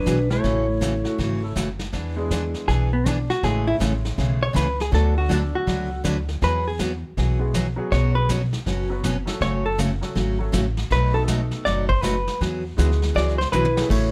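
A swung 4/4 groove drives this playful western swing excerpt, set by a vintage brush drum kit with dusky cymbals and a punchy kick, while the pizzicato upright bass sits up front with a woody, thumpy gut-string tone. A clean lap steel guitar opens with the melody, sliding through volume swells, before the hollow-body jazz guitar takes a solo at 1.9 seconds, its fingered, compressed sound dark and hollow. Beneath them, a picked dreadnought acoustic guitar adds full-bodied accompaniment, and a clear upright piano with long sustain sits further back in the mix. The harmony moves through sixth, major seventh, suspended and added-ninth chords before a B7 leads back toward Eadd9. A drum fill at 13.5 seconds coincides with the lap steel's brief return, all set in a light reverb.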